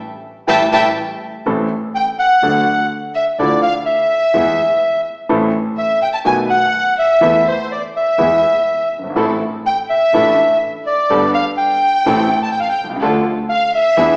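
A reedy, up-front bandoneon carries a melancholic, tense tango melody in a rubato 4/4 feel, shadowed by a lush, distant violin section and supported by a clear concert grand with deep bass and a bowed double bass in the background, while a dark, gut-toned string section adds stabs from 9.2 seconds, all set in the wet reverb of a recital hall.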